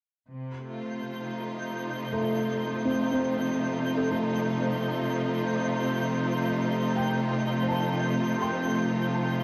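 A dark, warm production steeped in a huge reverb frames this peaceful ambient passage, cut from a longer piece, moving at 62 BPM in 3/4 over an F7 chord in F mixolydian. A bright, lush bowed string section sits up front with intense vibrato from 0.3 seconds, joined at 0.9 seconds by a twinkling granular texture with an octave-up shimmer, and at 1.8 seconds by a detuned, warbling analog drone with chorus in the background. From 2.1 seconds a felt-muted upright piano adds soft, intimate arpeggios through delay, its vintage action noise clearly audible.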